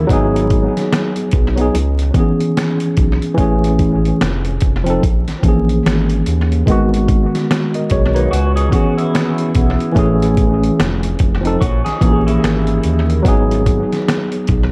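A worn, slightly out-of-tune tine electric piano sits up front throughout this reflective, hazy lo-fi hip hop excerpt, lightly overdriven through its built-in speakers and softened by a low-pass filter and analog delay. Set at 73 BPM in 4/4 with a swung sixteenth-note feel in G# minor, it carries the chords through a cycle of G#m7, C#m7, Amaj7, F7 and A#m7b5 that returns to G#m7. A dusty soul sampler-style kit of kick, snare, hi-hat and finger snaps enters at 0.1 seconds, compressed and gritty, with a thumpy kick and fat snare re-recorded in a small room and touched with analog delay. Underneath, a smooth, mellow synth bass blends sawtooth and square tones with a fast attack, sustained notes and vibrato. A slightly broken-up, fingered electric guitar through a small old amp adds a quieter second line, sounding briefly at the very start and then from 8.1 to 13.2 seconds, its lo-fi tone colored by phaser, low-pass filter and analog delay. 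Light reverb, vinyl crackle and an echo-heavy mix give the whole a hazy, dusty sheen.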